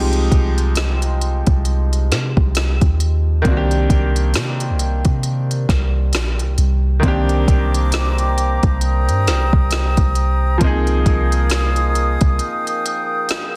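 Contemporary R&B at a slow 67 BPM in 4/4 with a swung sixteenth-note feel, this moody, longing excerpt sits in C minor and moves from Fm9/C to Cm9, then to Bb7sus4/C near the end. A bright, slightly worn grand piano carries the accompaniment in the middle register throughout, while a deep, round 808-style bass sits up front with fast-attack notes that decay into darkness. The smooth R&B kit pairs a soft kick and woody snare with silky hi-hats, its produced electronic sound given a tape-warmed character and the ambience of a large room. At 7.0 seconds a woodwind section enters with sustained chords in a higher register, its classical ensemble tone carrying light vibrato and a pumping sidechain motion. The bass drops out at 12.4 seconds for a brief break, and the close, dry mix is densely limited in a modern style.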